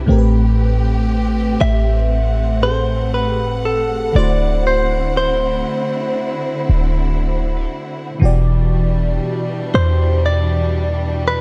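Contemporary R&B at a slow 59 BPM in 4/4, this short passage from a longer piece feels longing and sensual, moving through Am7, D9 and Em7. An FM electric piano layered with a soft pad supplies lush, dreamy accompaniment, its detuned tone colored by chorus and phaser. A clear studio string section holds sustained bowed chords beneath it with focused ensemble vibrato. A clean 808-style bass sits up front, deep and boomy with a mellow, decaying sine tone. At 1.6 seconds a direct-recorded clean electric guitar enters with a picked, compressed melody that sits close and present. Light reverb frames a dark, warm production.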